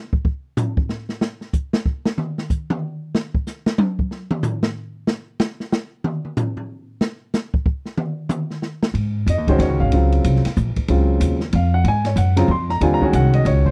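A dry, close recording in a 1970s studio style opens with a drum solo on an open jazz kit, its dark cymbals, boomy kick and medium-tuned snare sitting up front in a small room, swinging a hypnotic, searching modal jazz waltz at 186 BPM. At 8.9 seconds a woody, growly upright bass arrives over an Ab7sus4 chord, and a warm grand piano with audible action noise follows at 9.3 seconds to comp in Ab mixolydian before this excerpt cuts off.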